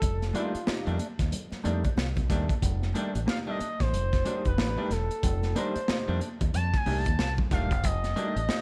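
A gritty, strutting funk excerpt at 92 BPM in F mixolydian, swung on the sixteenths and resting on an F13 chord, with light reverb over a crunchy breakbeat kit that sits up front, its punchy kick, medium-tuned snare and hi-hat saturated and dark with a rolled-off top. A fingered electric bass pushes forward directly beneath it, while a clean, compressed electric guitar with ensemble chorus sits in the background and an overdriven clav adds stringy, percussive stabs through a combo amp, both entering at 0.3 seconds. Over this, an analog synth lead carries the melody as a solo throughout, a smooth sawtooth with soft attack, vibrato, portamento and chorus, while very quiet high-tuned congas sound distant in a large room.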